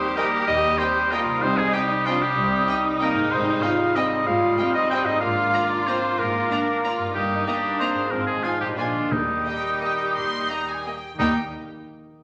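Festive and sweeping, this classical passage in Eb major moves in 3/4 at a tempo of 164-205 BPM with a flexible, rubato feel, and it is cut from a longer piece. A rich, lush violin section carries the melody high in its range, while a bright, up-front oboe and a mellow, hollow silver flute with vibrato sing second lines alongside a very quiet second violin section. Beneath them, a focused viola section and a solo bassoon fill out the accompaniment, a distant, roomy French horn section holds sustained chords in the background, and a fingerpicked concert harp rings out arpeggios. Cellos and woody double basses enter at 0.5 s to anchor the bass, and soft-mallet timpani with a round, dry tone join at 9.1 s as the harmony moves from Bb7 back home to Eb. The whole ensemble sits in a stone room reverb that gives the sweep of strings and winds an airy, resonant glow.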